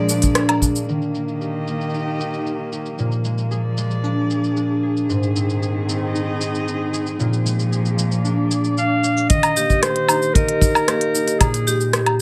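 This playful folktronica cut opens on a brief touch of dark, ringing vibraphone struck with hard mallets, over veiled, con sordino chords from a muted string quartet and a mellow concert harp picking arpeggios up front. An organic electronic kit with crisp, tape-warm hats, cabasa, rim click and woodblock settles in at once in a straight 4/4 at 114 BPM, with a punchy, brush-played kick marking an early band accent at 0.4 seconds. Through the first section the harp carries a filter sweep while the strings hold their chamber-sized chords, with vibrato and portamento, over a progression centred on Eb and Bb7, until they stop at 9.3 seconds. From 8.8 seconds a distant, roomy clarinet plays a warm solo melody in classical style, and the kick then returns as the vibraphone comes back with a second line, bathed in delay and plate reverb. Light reverb rounds out the mix, and the passage is clearly cut from a longer piece.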